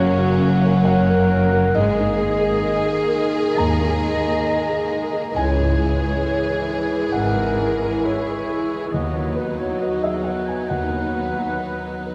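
A lush, focused violin section carries the sorrowful, longing melody in this slow, rubato cinematic passage in G# minor at 67 BPM, moving over F#, G#sus2, C#m and B/D# chords. A distant, mellow solo oboe, a pure small flute group and a very quiet, warm second violin section add second lines. Underneath, a soft felt-muted upright piano and a smooth viola section supply accompaniment, a vintage-toned French horn section holds background chords, and bowed cellos and double basses anchor the bass until 11.4 s, all set back in a spacious scoring-stage reverb.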